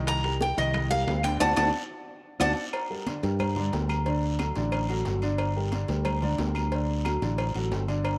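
This excerpt of fast, danceable salsa in G harmonic minor opens with a mellow upright piano with audible action noise and a round, up-front fingered electric bass, joined at 0.1 seconds by the full percussion section. A bright, metallic Cuban tres with picked double strings takes a short solo up front over Cm7 and D7, its notes carrying a slapback echo, before falling silent at 2.5 seconds. A band accent and a drum fill push toward the second section at 2.7 seconds, where the harmony settles into a passionate alternation of Gm and D at 180 BPM. The percussion blends ringing metal-shell timbales and agogo bells in a live room, tight bongos and cowbell, very quiet thick-skinned congas, woody claves and a raspy, saturated guiro. A moderate echo chamber reverb gives the whole a roomy depth.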